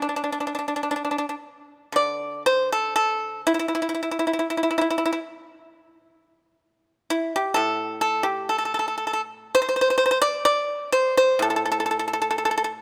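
Flowing in a free, rubato 2/4, this elegant and longing fragment of traditional Chinese music, cut from a longer piece, features a solo acoustic pipa played with fingerpicks, its bright, dry, percussive tone placed up front by close, detailed microphones with light reverb, as the opening passage gives way to a new section at 9.5 seconds.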